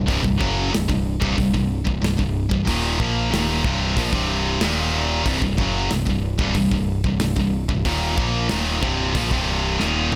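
An up-front, high-gain distorted guitar drives this relentless, aggressive heavy metal excerpt, joined by a second searing, picked guitar riff over a growling, overdriven bass with a round, punchy tone. A modern acoustic drum kit with a tight kick and medium-tuned snare joins at 0.1 s, working hi-hat and toms in a small room as the harmony moves from C minor to Eb and back. A drum fill closes the passage at 9.8 s.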